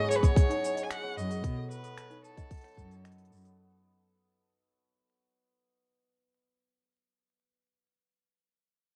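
A dark, warm production with vinyl crackle and a light, small-room reverb frames this brief, fading fragment of pastoral, delicate folktronica, cut from a longer piece. A rich, focused bowed violin carries the melody with vibrato, shadowed by a worn, bell-like celesta that sounds sweet but slightly out of tune, both trailing tape echo. Beneath them a hammered cimbalom rings and shimmers with arpeggios, and it is the last part still sounding at 7.6 seconds. A tight, up-front electronic kick anchors the steady pulse alongside smooth hats, finger snaps and shaker from an organic electronic kit, while a dark, woody cello enters close at 1.2 seconds to bow the bass line with vibrato. The harmony moves from G#m7 to B7 as the whole passage fades out.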